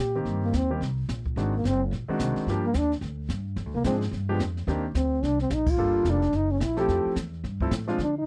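A brisk swing at 217 BPM in 4/4 drives this short cut from a longer small-group jazz piece in C minor, its eighth notes carrying a light swing and its mood playful and sophisticated. A breathy, mellow trombone leads the melody up front, close-miked with vibrato and scooped notes, moving between Bb3 and G4. Beneath it, a woody, growly upright bass plays pizzicato, and a concert grand piano with a natural, deep-bottomed tone comps through chords such as Cm7, Ab7#11, Dm7b5 and G7b9 before settling on Fmaj7. A brushed drum kit enters at 0.3 seconds, pairing dark cymbals and a high-tuned snare with a boomy kick. The whole band hits an accent at 5.6 seconds, and the dry, close studio sound has a 1970s character with little reverb.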